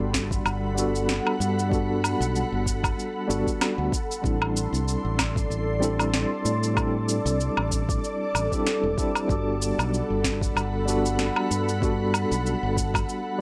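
A lightly swung 95 BPM groove in 4/4 from overdriven electronic drums, with a soft kick re-recorded in a small room and a sharp, up-front snare with shaker and woodblock, carries this sunny, blissful sunset chillout excerpt in G major, where a dark, round, punchy fingered electric bass sits prominently beneath a worn, slightly out-of-tune tine electric piano with medium tremolo and analog delay through a combo amp, while an ethereal, airy pad with ensemble chorus, phaser and built-in reverb holds mellow sustained chords high above, moving from Gmaj9 to D7sus4/A at 3.9 seconds and back to Gmaj9 at 9.3 seconds in a dry, gritty hardware recording.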